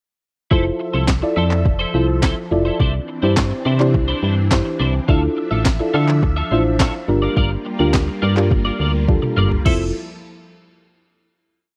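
A punchy, round FM bass sits up front in this euphoric, carefree dance-pop piece with syncopated figures and sidechain pumping, alongside an electronic drum kit whose soft kick drives a four-on-the-floor beat, with a sharp snare layered with handclaps, plus crash and toms, and a fill at 9.1 s. Above them, deep, nasal chord stabs with chorus pulse in syncopation, a bright, clean twelve-string electric guitar picks a choppy funk-style riff through analog chorus, and a swirling phased string machine holds sustained chords, while the whole recording carries light reverb and the worn, warbly pitch drift of old cassette tape before settling on a final chord at 9.7 s.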